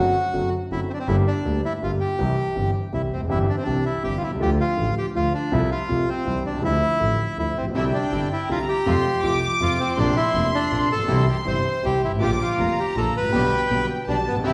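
A reedy, dark bandoneon carries the melody up front over a deep-bassed concert grand piano and a boxy, airy-bowed double bass with vibrato in this playful, passionate tango fragment in 3/4 at 162 BPM with a rubato feel, tuned to A4 = 437 Hz, before a very quiet, earthy chamber string section adds stabs at 7.7 seconds and a gut-string violin section with a smooth top joins on a second line at 7.8 seconds, the band sounding live together in one room with a wet, large reverb.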